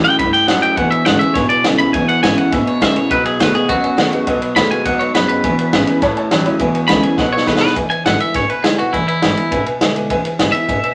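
A small, wet room surrounds this rowdy, rollicking rockabilly excerpt, with a natural studio sound that keeps the drums and lead guitar up front. A bright, clean, compressed electric guitar carries the melody as a twangy solo through the first section. A second electric guitar, slightly broken-up and lo-fi through a small old amp, plays a low riff until 7.7 seconds. A full-bodied steel-string acoustic guitar plays fresh-sounding picked accompaniment with audible finger squeak, and a dark, mellow upright piano joins at 0.8 seconds with woody action noise. Beneath them, a pizzicato upright bass sits in the background with a woody tone, while a vintage kit of punchy kick, medium-tuned snare and dark ride cymbal drives the straight beat and throws in a fill at 7.2 seconds before the music moves into a new section over a dominant-seventh blues progression.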